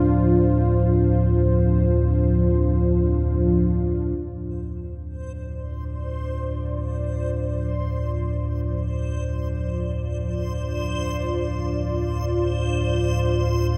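Dark ambient drone in free time and D minor, with an unsettling, ominous mood, taken from a longer piece and set in a wet cathedral reverb with a dark production. A deep, rumbling drone carries phaser and its own reverb, while a moody, full-bodied analog pad of detuned sawtooth and a sub octave holds sustained chords with chorus, both sitting up front throughout. At 5.2 seconds a reversed, granular texture enters on a single high note, adding a dreamy, bright haze far beneath them in the mix.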